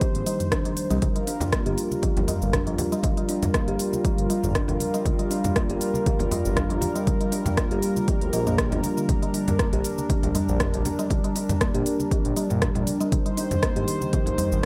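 A detuned, chorused analog pad holds soft-attack chords up front while a woody, mellow kalimba plays delayed arpeggios, both pumping against a punchy electronic kick and a deep house kit of smooth hi-hat, rim click, shaker and toms. This hypnotic, spiritual afro house excerpt runs at 119 BPM in G minor with a light 16th-note swing. A sawtooth-and-square synth bass with a moving notch sits in the background from 0.1 s, low-tuned, thick-skinned congas join at 1.0 s, and the harmony rests on Gm7 before shifting to Bb6 at 9.1 s, all bathed in a dreamy plate reverb.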